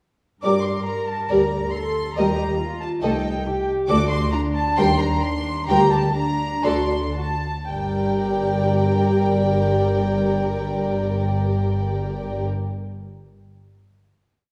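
In a straight 4/4, this quick, restless classical-period movement for string orchestra presses forward with urgency, slowing from 3.0 to 7.7 seconds before arriving on a final chord held until 12.0 seconds. The first violins carry a pure, floating melody above the darker second violins' short accented and sustained chords. The woody, lush violas fill in the harmony, the cellos add a counter-melody over sustained bass, and the intimate double basses play on the beats, doubling the bass line. All five sections are bowed sul tasto and heard from further back in a recital hall with a long, wet reverb.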